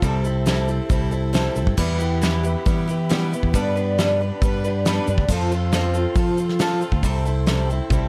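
This folk rock and heartland rock excerpt opens with the full band at once. Up front, a picked twelve-string acoustic guitar sounds woody and shimmering, its old strings and octave-doubled ring paired with a punchy, amped fingered electric bass. A soft brush drum kit with a fat snare and tight kick keeps a straight 4/4 at 137 BPM. In the background sit a grainy tube shaker and a mellow, flute-like tonewheel organ with key click and a slow rotary speaker, the organ holding sustained chords. The harmony moves from C6 through Em, G and F, back to C6 at 7.0 seconds, and a drum fill arrives at 7.9 seconds. The dark, warm production with little reverb suits its nostalgic mood.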